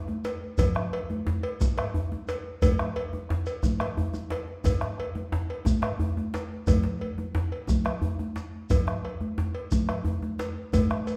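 Congas and djembe open this festive, driving West African drum ensemble at 0.1 s: the congas bright and thin-skinned under soft hands, close and dry, and the djembe medium-tuned with metal rattles, close and up front. A metallic cowbell and a grainy, mellow shekere join almost at once with a live-room sound, and a deep, dark bombo enters up front at 0.6 s, with the ensemble moving at 118 BPM in a straight 12/8 feel. The group sits in a reverberant recital hall, and the passage is cut from a longer piece.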